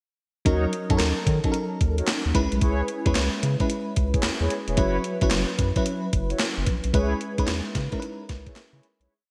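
A gated 80s digital drum machine sits up front in this bouncy, confident R&B and new jack swing piece, its hard-swung beat built from a thumpy kick, hi-hat, and a gated-reverb snare layered with handclaps, all roughened by vintage 12-bit sampler grit. A round, deep analog bass plays a swung synth-funk line beneath an FM electric piano with tremolo and phaser pushing drop-2 chords with grace notes, while mellow synth brass adds short syncopated stabs through chorus and digital delay. The bright 1980s-style digital production is set in a lush hall reverb, and the short piece fades out from 6.9 seconds to its end at 9.1 seconds.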